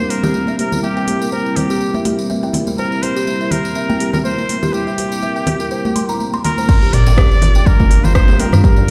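A muted trumpet with a nasal, breathy tone and tape echo carries the melody over a dark, detuned analog pad pumping under the sidechain, ringing congas played close and dry, a jingly tambourine, a woody kalimba arpeggio and an overdriven afro-pop kit with metallic hats in this spiritual 123 BPM afro house excerpt, until the drop at 6.7 seconds brings in a deep overdriven electronic kick up front, a round sine sub bass at 6.9 seconds and a saturated djembe in the background as the harmony moves from C7 to Gm7.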